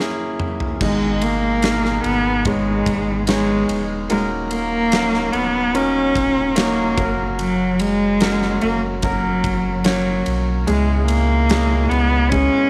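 A rich, up-front bowed cello sings the longing melody with vibrato and portamento in this emotional pop ballad cut from a longer piece. It enters at 0.8 seconds, after an opening fill on a huge, airy arena drum kit with bright cymbals and a punchy kick. Beneath it, a clear, intimate grand piano with audible action noise and long sustain and a deep, round sub bass fill out the sound in light studio reverb.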